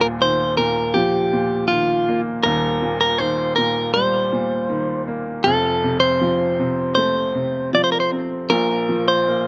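A clean, picked electric guitar carries the melody up front, its compressed tone touched by slapback echo, while a woody, boxy upright piano supports it from low in the register. This hopeful, heartfelt pop fragment moves in an unhurried straight 4/4 through Ebsus2, Cm7/Eb, F and Bb5, cut from a longer piece. Both parts play throughout its 9.5 seconds, captured outdoors with light reverb.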